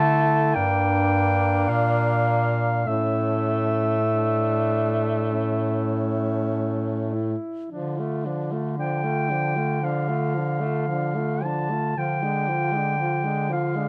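Yearning and elegiac, this short cut from a longer classical piece for single-reed quartet unfolds in D minor at a slow, rubato 48-61 BPM, with a warm, distant clarinet singing the melody up front over a clear alto saxophone second line, a vintage-toned tenor saxophone accompaniment with vibrato, and a close-miked bass clarinet anchoring the bass, all in a lightly reverberant, detailed recording that moves through G minor and A toward a D diminished chord at 12.0 seconds.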